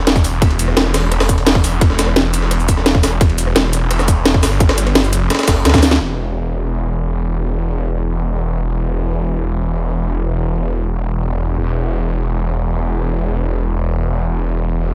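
Aggressive and mechanical, this dark technical drum and bass cut in E minor at 172 BPM opens on a drop where a tight, overdriven electronic kick sits up front with a layered electronic kit of cracking snare, bright hats, cabasa and rim click, over a gritty, compressed sampler-style breakbeat with a high-tuned snare and small-room character, while a snarling, detuned sawtooth bass growls with distortion and sidechain pumping, and after a drum fill closes the drums at 6.0 seconds the bass carries on alone until 14.9 seconds.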